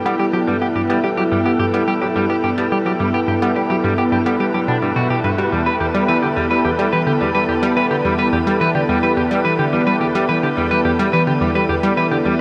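A sweeping, resonant pad of detuned sawtooth and sine layers, with a sub octave and chorus, holds sustained chords up front in this luminous, expansive excerpt of sequencer-driven ambient space music at 107 BPM in a straight 4/4, moving from G to Em at 5.5 s. A clean, picked electric guitar plays arpeggios through tape echo, while a round, wave-folded analog pluck carries a riff with chorus and tape echo, and a breathy, wind-like tuned noise texture sits dark in the background with its own reverb. A wet shimmer reverb with a 6.9 s tail fills the space around the whole piece.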